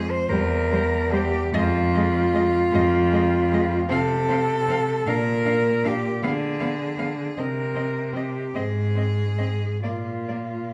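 Two clear, up-front bowed cellos, one carrying a smooth, even second line and the other a focused bass, anchor this serene, lyrical classical fragment for cello ensemble in a rubato 6/8, while two rich, distant cellos sit in the background, one singing an expressive melody with vibrato and portamento and the other playing a focused accompaniment, all bathed in the dark, warm resonance of a recital hall.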